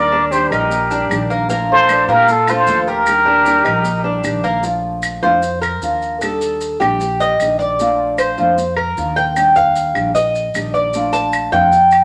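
A breathy, plunger-muted trumpet with a wah-wah edge carries the melody up front for the first 4.3 seconds of this relaxed Cuban son and guajira excerpt at 152 BPM in Bb major, shadowed by a distant, reedy flute, before the metallic, double-strung Cuban tres takes a solo from 4.6 seconds over a dark, fingerpicked nylon-string guitar, a thumpy pizzicato upright bass, grainy maracas and dry, woody claves in a moderate studio reverb.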